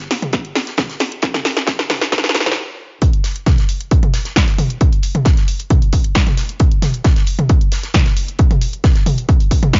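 A punchy analog drum machine and a damped 70s acoustic kit open this relentless, intense techno excerpt with a drum fill that drives a short build-up, joined at 0.3 seconds by a heavy, layered electronic kick. The drum machine sits up front with a dry, punchy snare, hi-hats and toms, its hats and toms pumping against the sidechain. Behind it, the mid-forward acoustic kit adds hi-hat and a fat snare, thinned by high-pass filtering and pumping on the hats. The fill breaks off at 2.6 seconds for a brief stop, and the drop lands at 3.0 seconds, carried by the straight pulse of the tape-warm kick, re-recorded in a small room and placed prominently in the mix. The overall sound is dry, with little reverb, the high end rolled off above 7.5 kHz and the low end trimmed by a high-pass filter.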